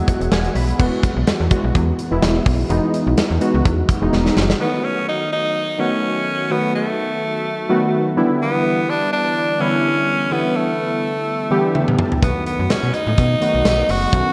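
1980s-style pop at 126 BPM with a light sixteenth-note swing, nostalgic yet urgent, moving through Eadd9, B7 and G6 chords. Round, detuned sawtooth analog keys with chorus play throughout, while a snappy, metallic FM slap bass and a big acoustic rock kit (tight kick, medium-tuned snare, toms, crash, hi-hat and tambourine) drive the opening, drop out near 4.6 seconds and return around 12 seconds. A raspy, gritty tenor saxophone with light vibrato takes the forceful lead from 4.6 seconds, set in a dreamy mix soaked in lush hall reverb.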